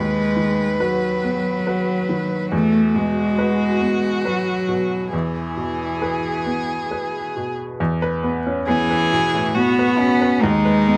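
Intimate and tender, this brief neoclassical excerpt for piano and strings moves in an unhurried, rubato 3/4, drifting between suspended and settled harmonies before a second section begins at 7.8 seconds. A rich, expressive solo violin carries the melody with vibrato and portamento, sounding somewhat distant, while a clear, intense cello with a smooth top and its own vibrato sings a second line just beneath. A bright, woody upright piano, slightly detuned and up front with audible action noise, supplies the accompaniment, all captured by close, detailed microphones in light reverb.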